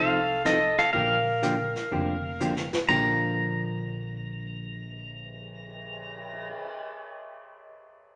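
Cheerful and playful, this short western swing excerpt has a loose, swinging country lilt, moving from an F7 chord to Bb6. A bright, compressed pedal steel guitar carries the melody up front with fingerpicked slide lines and volume swells, while a dark, clean hollow-body jazz guitar fingers the accompaniment beside it and a woody, thumpy upright bass plucks the low end. A vintage brush drum kit with dark cymbals and a rolled-off top enters at 0.5 s and plays a fill around 2.4 s, all set in a wet studio reverb.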